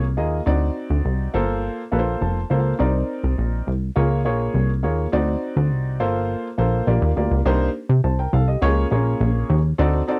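A home cassette recording with light reverb carries this short excerpt of slick, funky early-eighties boogie funk at 103 BPM in C dorian, moving through lush chords like D7b9, Gm11 and Cm9. Up front, a punchy, plucky analog bass with a fast-attack filter pluck drives the groove, while an intimate baby grand piano with a taped tone and audible action noise plays the accompaniment and adds a fill at 1.9 seconds. A new section arrives at 7.5 seconds, returning to Cm9 before the bass stops at 10.0 seconds.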